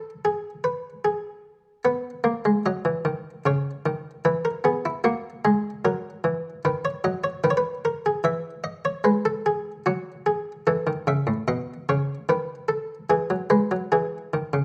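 A buff-stop harpsichord carries this short baroque-style two-part invention on its own, its plucked, muted, lute-like tone sitting up front in a Flemish-style voice. The classical piece is joyful and lively, moving at 75 BPM in a straight 4/4 in E major, and the harpsichord spans from A2 up to E5 across the full 14.6 seconds. Its mid-forward character stays dry and close on the instrument itself, caught by detailed microphones, while a moderate recital hall reverb of 1.3 seconds gives the space around it some air. After an opening with the harmony unstated, the chords move from B at 1.8 seconds through C#m7, F#, B/D#, E, F#m7 and B before settling on E at 13.1 seconds. This clip is cut from a longer piece.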